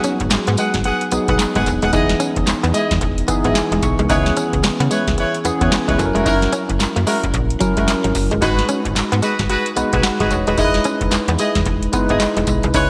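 A booming analog drum machine with a deep kick, tonal snare, metallic hats, handclaps and tambourine drives this punchy, bouncy new jack swing cut from a longer piece, with gated reverb on the drums, a snappy slap-like FM bass joining at 0.2 s, a bright tine electric piano with analog chorus that adds a fill at 3.0 s, tight jazz-style horn stabs set distant in the room, and a twangy clean guitar riff in the background, all in a bright 1980s-style digital production with a lush hall reverb.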